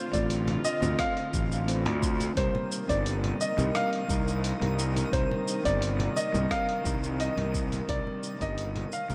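A growly, overdriven fuzz bass sits up front in this smooth sunset chillout excerpt at 87 BPM in C dorian, moving from Dm7 to Cm7 at 2.4 seconds. A dark, mellow baby grand piano carries the melody with audible action noise, 12-bit sampler grit and a diffuse ambient delay. A clean hollow-body jazz guitar with the same delay and a sul tasto string section with light vibrato sit in the background, while a gritty, tape-toned sampler kit with hi-hat, rim click and shaker, a deep layered electronic kick and very quiet hard-handed congas keep a straight groove. A very quiet, sparkling granular texture with an octave-up shimmer enters at 3.1 seconds, and the reverb-soaked, dreamy mix fades out from 6.0 seconds.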